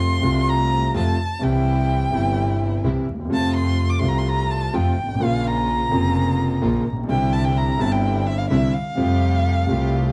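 A dark, warm production with vinyl crackle and light reverb frames this tense, passionate tango excerpt in F major, moving at 127 BPM in 4/4 with a rubato feel and tuned to A4 = 445 Hz. Up front, an intimate concert grand piano with audible action noise and deep bass carries the accompaniment through F, C, Bbm, Cadd9 and Fadd9, while a distant, earthy bowed double bass holds the low end. A close, expressive violin takes a solo across the full 10.1 seconds with vibrato, soft attacks and portamento, as a clear symphonic string section adds intense, smooth-topped bowed stabs in the background.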